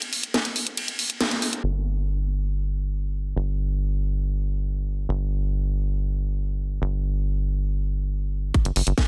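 Psychedelic trance with an alien, driving mood, opening on a garage drum kit of hi-hat, ride and cracking snare with a band accent at 1.2 seconds before a tight, punchy sawtooth sequencer bass with a fast-attack filter pluck carries a filter sweep from 1.6 seconds, and a layered, tape-warm electronic kick joins the kit at 8.5 seconds under light digital reverb in a dense, heavily limited master.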